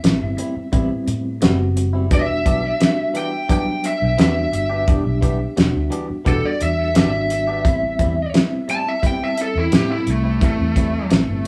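This excerpt of straight-eighth soul blues opens with the full rhythm section at once. A cloth-damped, thuddy drum kit with a fat snare, a tight kick and a rolled-off top sits up front. A foam-muted fingered bass adds round, punchy low notes, and a reedy electric piano pulses with fast tremolo. A clean, direct-recorded electric guitar cuts in with bright, twangy, compressed stabs. The mood is smoky and brooding as the harmony moves from Am7 to Em7 and back to Am7. At 2.1 s a lead guitar through a small cranked amp enters, dark and overdriven, its picked melody trailed by a digital delay. The band sounds like it is playing together in one small room, with a moderate studio reverb adding a short tail.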